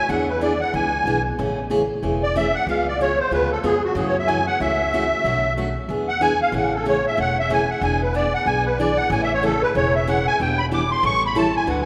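Drenched in a long church reverb, this charming, swinging snippet of acoustic string swing puts a reedy, shimmering musette accordion up front on a solo that runs throughout, backed by a bright, full-bodied picked steel-string acoustic guitar and a woody, growly pizzicato upright bass, as the changes move from E7 through Amaj7 and F#m7 before closing on A7.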